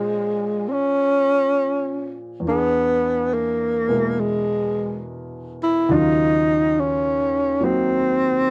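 Close, detailed microphones and very little reverb give this brief jazz ballad fragment an intimate, dry presence, as if the players were only a few feet away. A breathy tenor saxophone carries the melody up front, its dark, whispered subtone marked by soft attacks, scooped notes and a gentle vibrato that lend the line a melancholic tenderness. Beneath it, an upright piano plays a clear, woody accompaniment at a noticeably lower level, covering a broad register under the horn. The harmony moves from Bbm7 to E7#11 and settles on Ebm7, all in a relaxed swung 4/4. Both instruments play together throughout the 8.5 seconds, which are cut from a longer piece.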